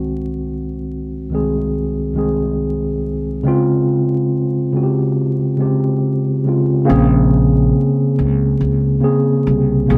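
A mellow, clean tine electric piano with cassette-tape colour opens this reflective, hazy lo-fi hip hop excerpt at a slow 70 BPM in Bb dorian, moving through Ab7/C and Dbmaj7 under a lightly swung 16th-note feel, before a woody, thumpy pizzicato upright bass on gut strings joins up front at 6.9 seconds as the harmony settles onto Bbm9, all set in a small room with vinyl crackle.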